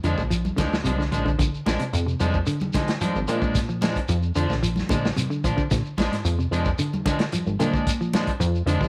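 Joyful and hypnotic, this afrobeat excerpt rides a single Bb7 chord with a gritty, saturated breakbeat kit of punchy kick and hi-hat, a plucky analog bass up front with a funky filter pluck, a dark, clean semi-hollow guitar playing arpeggios, twangy stabs from a slightly broken-up electric guitar, a grainy, close shekere, and bright congas in the background from 0.3 seconds, all set in light reverb and small room ambience.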